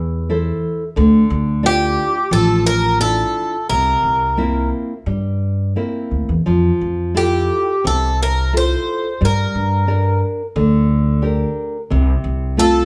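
Fado-style ballad in F major at 88 BPM in 4/4, played with a rubato feel that gives this short excerpt a tender, nostalgic mood. A dark, full-bodied nylon-string guitar fingerpicks the accompaniment throughout, its deep classical tone sitting up front, while a woody, growly upright bass played pizzicato on steel strings anchors the low end. At 1.7 seconds a picked twelve-string acoustic guitar enters with the melody, its boxy, shimmering octave-doubled sound carrying a touch of swing and audible finger squeak. The harmony drifts from A minor through Dmadd9, C7 and Fmaj7 to G minor before settling on F over C near 11.9 seconds. The trio plays live in one room, and a moderate, large studio reverb lends the close, present instruments a sense of space.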